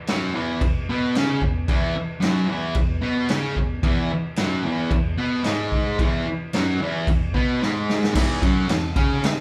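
A fuzz-drenched electric guitar riff and a raw garage drum kit kick in together at the very start of this swaggering garage rock clip, driving a straight 4/4 at 111 BPM in E major. The picked guitar riff is double-tracked and up front, its distortion thick and fuzzy as it ranges from E2 up to C#4. The drums sound acoustic and natural, with a punchy kick, a medium-tuned snare, crash and ride cymbals, and a gritty, saturated character with a rolled-off top. The whole band plays live in one room, wrapped in a moderate large-studio reverb that adds depth to the raw feel. After a drum fill from 7.6 to 8.2 seconds, the harmony shifts from a steady E to C#madd11/E for a brief closing section before the clip cuts off at 9.4 seconds.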